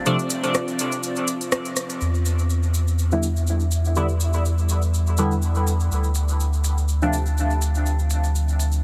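A round, sine-toned sub bass sits up front from 2.0 s, anchoring this hazy, deep dub techno excerpt as the harmony moves from Dm7 to Em7 and back. A juicy, resonant square-and-sawtooth polysynth fires stabs through a filter sweep, ring modulation, phaser, chorus and dub echo, returning at 3.1 s, while a dark, detuned ambient pad holds slow-blooming sustained chords in the background. A smooth-hatted electronic drum kit with rim clicks, re-recorded in a small room and low-pass filtered, runs alongside a grainy, vintage tube shaker, with a band accent at 1.5 s inside the opening break, all framed by a heavily compressed, radio-like sound and light reverb.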